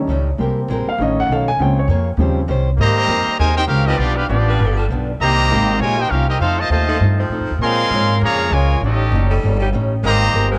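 A home cassette recording with light reverb and a small-room feel gives this swinging, brassy big band jazz passage, cut from a longer piece, a homespun sound, with tape coloring the piano, guitar and horn sections. A natural-sounding baby grand piano opens up front over a woody pizzicato upright bass with steel strings and a boxy, picked archtop guitar on old strings, the piano dropping out at 2.4 seconds. At 2.8 seconds a bright, present trumpet section takes the melody while a brilliant trombone section with light vibrato carries a second line in the background, and from 3.0 seconds a warm saxophone section adds soft-attack sustained chords with vibrato.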